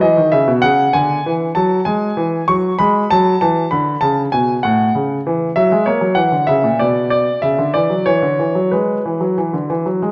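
A bright concert grand piano opens alone on an E5 chord, playing a playful, graceful classical-period sonatina at 97 BPM in a straight 4/4, with harmony moving through C#m, F#m, F#7 and Bm before settling on E near 8.1 seconds. The piano sits up front with a brilliant, polished tone, deep bass, long sustain and audible action noise, spanning A2 to C#6 in an intimate, present sound. A wet recital hall reverb surrounds it, while a worn cassette-tape quality adds warbly pitch drift to this short 10.1-second fragment cut from a longer piece.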